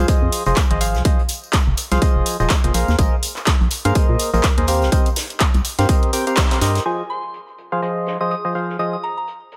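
Soulful, bittersweet piano house at 124 BPM in F minor with a swung groove, built on a nasal, wave-folded organ stab riff with chorus and sidechain pumping over a hollow, dark FM bass with tube saturation, moving through Fm7, Bb9sus4 and Cm7. A punchy, overdriven electronic kick sits up front alongside a layered house kit of handclaps and filtered hi-hat, while a close, dry tambourine and a distant, roomy acoustic kit of hi-hat and snare sit low in the background. After a band accent at 6.4 seconds, the kick, bass and house percussion fall away, and at 6.9 seconds a soft, pure synth bell with tape echo floats over the organ stab and acoustic kit in a light small-room reverb.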